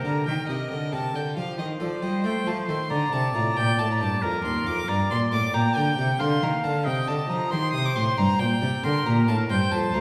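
From the first moment, a rich, gut-strung violin carries the melody and a clear oboe with light vibrato adds a second line, over an airy, brilliant harpsichord and a dark, reedy cello bass, in this serene, dance-like baroque-style sonata movement in 12/8, a fragment of a longer piece heard from further back in a reverberant recital hall, with its harmony turning toward the minor at 5.5 s.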